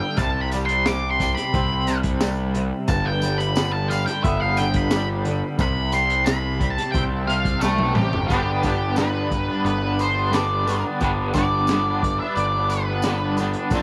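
Hypnotic and trippy, this psychedelic rock excerpt in G major moves at 89 BPM in a straight 4/4, with a dark, distorted octave-fuzz lead guitar soloing through tape echo until 8.3 seconds, a twangy, double-tracked electric guitar riff coloured by tremolo, a bright, overdriven picked bass up front, a gritty, saturated breakbeat drum kit with a high-tuned snare and punchy kick that plays a fill at 7.6 seconds, and a jingly tambourine tucked into the background of a small room with light reverb.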